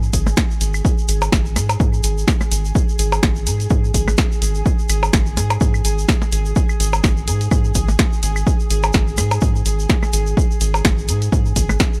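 This twelve-second cut from a longer minimal techno piece opens immediately with three parts: a rubbery, hollow square-wave bass moving between G#1 and G#2, a grainy vintage tube shaker, and a pulsing, tempo-synced gated texture holding a bright G#4. At 126 BPM in 4/4 with a light swing on the 16ths, the mood is hypnotic and quirky. Within the first fraction of a second, an electronic kick drum lands up front, joined by an analog drum machine supplying hi-hat and a punchy snare, both re-recorded in a small room. Overdriven percussion blips and claves enter at 0.3 seconds, treated with analog delay. The bass is dark and resonant, with a fast filter pluck and sidechain pumping, while the texture's soft-attack triangle unison carries chorus and its own reverb and pumps as well. The overall sound is a dry, gritty hardware recording set in a digital ambience.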